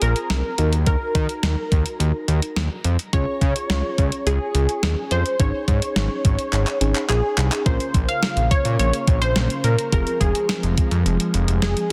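A dense, heavily limited modern mix with light digital ambience frames this wistful, nostalgic synth-pop fragment in straight 4/4. A punchy, funky polysynth with a filter pluck carries the melody through chorus, tape echo and shimmer reverb. It sits over a soft, round FM electric piano, a thick, detuned sawtooth bass up front, and a thumpy, sampler-style drum machine with a fat snare, handclaps and hi-hat that plays a fill at 6.5 s, before a swirling, phased analog pad enters in the background at 7.7 s.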